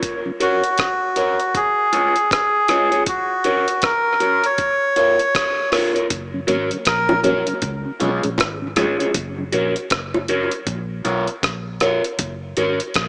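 A laid-back, hazy dub reggae groove at 79 BPM in F# major, with a swung sixteenth-note feel carried by a gritty, compressed sampler-style drum kit of thumpy kick, hi-hat and rim click sitting up front. A reedy, breathy melodica carries the melody through dub echo, while a dark, slightly broken-up electric guitar adds phaser-tinged accompaniment, and a mellow tonewheel organ with slow rotary speaker and chorus vibrato drifts in underneath. A round, foam-muted electric bass enters at 6.1 s, and low-tuned bongos echo in the background from 7.1 to 10.3 s, all framed by light digital reverb and a small-speaker sound in this fragment of a longer piece.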